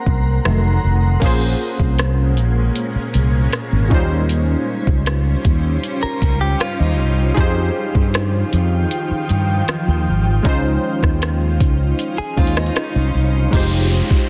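Longing and sensual, this contemporary R&B fragment rests on detuned, chorused analog keys with filter sweeps and a cloudy, evolving granular pad that pumps gently against the beat and glows with bright built-in reverb. Up front sit a round, punchy fretless electric bass and a smooth, tape-warm electronic drum kit with a soft kick, metallic hi-hats, rim clicks, crashes and a gently clipped snare, over rich extended minor and ninth chords. A clean, scooped electric guitar picks brief tape-echoed arpeggios at 6.0 and 12.2 seconds, and an electronic downlifter arrives at 13.5 seconds inside a dense, heavily limited modern mix.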